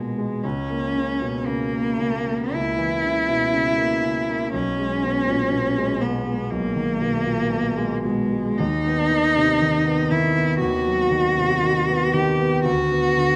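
A bowed cello and a concert grand piano begin together in this melancholic, elegiac romantic duo, cut from a longer piece and unfolding with a free, rubato feel. The single cello carries the melody up front, its rich, focused tone colored by vibrato. The clear, natural piano supports it from below with deep bass, and its chords arrive at a Bm/D at 12.6 seconds, all within the moderate reverb of a recital hall.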